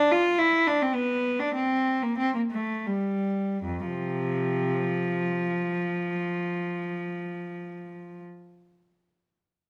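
This is a classical, baroque-style suite movement for unaccompanied cello in F major and 3/4 time, cut from a longer piece. The mood is radiant and dance-like, with a rubato feel and a tempo that moves between 74 and 110 BPM. A single bowed cello plays throughout, from 0.0 to 8.2 seconds, ranging from F2 to F4 with a rich, reedy gut-string tone in period style. The opening passage slows down through its first 3.6 seconds before a new section begins and runs to about 8.1 seconds. The cello sits up front in a stone room with moderate reverb that lends the bowing a resonant halo.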